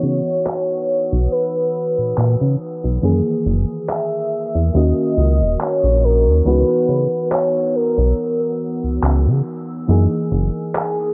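A velvety, smooth synth lead with vibrato and gliding portamento carries the melody through tape echo in this hazy, nostalgic vaporwave excerpt at 70 BPM in C# dorian, over a round, mellow FM electric piano, a glossy chorused synth bass up front, a warbling lo-fi pad sitting in the background from 0.4 seconds, and overdriven, sampler-style electronic handclaps from 0.5 seconds, all moving through C#m11, F#13 and D#m7 under a filter sweep and a cassette-tape sheen.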